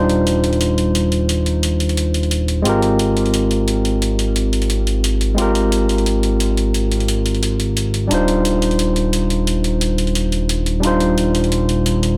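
Liquid drum and bass at 176 BPM in Eb major, dreamy and lush, where a bright, barky tine electric piano, filtered and trailed by dub echo, voices Ebmaj13 and Abmaj13 chords up front over a smooth, mellow sawtooth-and-square synth bass with a moving notch, while a gritty, compressed sampler-style electronic hi-hat, re-recorded in a large room, ticks from 0.1 to 12.1 seconds under light digital reverb in this short cut from a longer piece.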